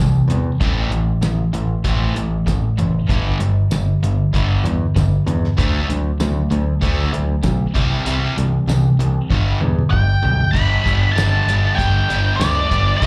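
Swaggering and driving, this classic rock passage, cut from a longer piece, sets an up-front crunchy overdriven guitar with slapback echo against a brighter overdriven guitar in the background, a punchy, direct picked electric bass and a cloth-damped, thuddy drum kit with a fat snare, a tight kick and tambourine. During a drum fill starting at 9.3 s, a dark octave-fuzz lead guitar with wah, distortion, plate reverb and slapback echo enters high at 9.9 s over chords moving from C and Am through G and D. The band sounds like a live club gig heard through the venue's PA, with light reverb.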